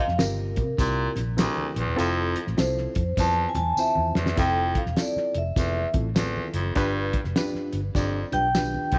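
This danceable, joyful slice of uptempo 1960s-style soul opens with a soft-mallet vibraphone carrying the melody in a solo that runs from the start to 4.4 seconds, its mellow, ringing tone shimmering with slow motor vibrato. Beneath it, a reedy, worn electric piano plays slightly out of tune through its built-in speakers, while a clear, vintage baritone saxophone repeats a low riff with vibrato in a pop style. A foam-muted electric bass adds a dark, round and punchy low end, and a dry soul drum kit with a fat snare, tight kick and rolled-off top drives the swung groove, with a fill starting at 3.8 seconds and leading into the second section at 4.4 seconds. Bright, jingly tambourine and very quiet, low-tuned congas played with soft hands fill out the percussion as the harmony moves from a suspended dominant chord to a major seventh and later to G7. At 8.3 seconds, a bell-like glockenspiel struck with rubber mallets adds a soft second line, and the whole excerpt sits in light reverb with a small-room ambience.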